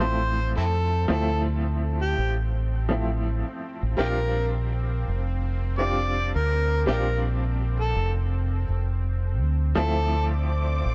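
A slow trip hop groove at 83 BPM in 4/4 swings its sixteenths gently, setting a smoky, melancholic mood in D minor across this short cut from a longer piece. A round, dark fingered electric bass sits up front, carrying the low end under a bright, woody upright piano whose slightly detuned accompaniment is shaded with tremolo, a low-pass filter and tape echo. Leading the melody, an overdriven harmonica sounds gritty and amplified, its jazz-style solo full of scooped notes, tongue slaps and light vibrato, with dub echo trailing behind. From 0.5 seconds a nasal, tense bowed-like drone holds a single C4 in the background, its vibrato and built-in reverb adding an uneasy haze. The harmony moves from Dm7 to Bb6 and back to Dm7 at 9.8 seconds, where a vintage string machine in cello voicing enters with mellow, sawtooth chords thickened by ensemble chorus. The whole sits in a small room with a dark, warm production.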